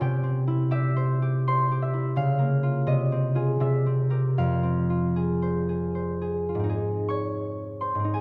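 A dark, warm production places a ringing concert harp up front, bathed in the wet reverb of a scoring stage with a decay of about 1.6 seconds. This brief classical passage for solo harp, cut from a longer piece, sits in F minor in 3/4 at a rubato pace of roughly 75-88 BPM, and its mood is mysterious and wistful. The fingerpicked acoustic harp spans from F2 up to Db6, moving from an opening C through Bbm/Db, Fm/C and C7 before settling on Fm at 4.4 seconds. At 6.7 seconds the music turns to a new section on an Ab chord, which carries the closing moments until the passage ends at 8.2 seconds.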